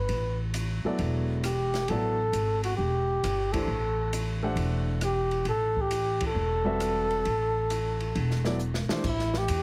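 A swung 4/4 groove carries this cool, spiritual modal jazz fragment, cut from a longer piece, where a veiled, close-miked bucket-muted trumpet sings the melody with light vibrato and plate reverb over woody pizzicato upright bass, a natural-sounding baby grand piano comping with short sustain, and an airy small-room drum kit with dark cymbals and a boomy kick, the band hitting accents at 3.5 and 6.1 seconds before a drum fill at 8.6 seconds, all heard through a heavily compressed radio sound.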